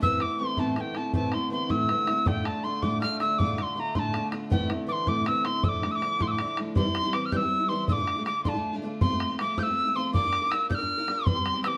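A chiffy wooden whistle with a crisp attack and vibrato leads this driving, dark and lively Celtic jig in D minor at 107 BPM in 6/8, up front over a warmly picked steel-string acoustic guitar, a damped, tight bodhran, and a reedy, sweet accordion drone with light tremolo tuning that sits in the background until 6.8 s, the band playing live together in one stone room with a wet reverb in this cut from a longer piece.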